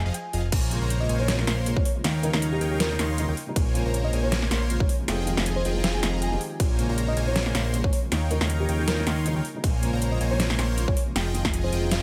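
A digital ambience surrounds this bittersweet, lush future bass passage, cut from a longer piece and moving at 158 BPM in 4/4 with a half-time feel and a light swing on the sixteenths, in B-flat dorian. Up front, a fat analog bass built from detuned sawtooth and square waves holds the low end with a filter sweep and moving notch, pumping under sidechain compression. A big, bright polysynth plays a bold, full-bodied riff through phaser and delay, while a bell-like FM electric piano carries the melody in the background, sparkling and warbling with chorus and tape echo. The overdriven drums sit forward: a dubstep kit with a deep snare, metallic hats, crash and ride comes in at 0.1 seconds, joined by a punchy, layered electronic kick at 0.5 seconds, both re-recorded in a small room. Tucked behind them from 0.7 seconds, a felt-muted upright piano adds soft, intimate, dark accompaniment with audible action noise, as the chords cycle through Fm7, Bbm7 and Eb9.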